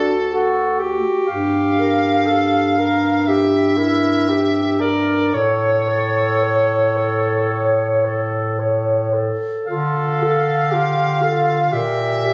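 Captured on a phone in a recital hall, with compression, a dulled top end and a blend of hall and club reverb, this solemn, melancholic classical excerpt for single-reed quartet drifts in rubato 4/4 at about 54-62 BPM in D minor, with an edgy, up-front soprano saxophone singing the melody with light vibrato over a clear, close alto saxophone second line, while a warm, distant clarinet accompaniment and a roomy, prominent bass clarinet bass move through D, Edim/G, A, Dm and Gm/Bb across its 12.3 seconds.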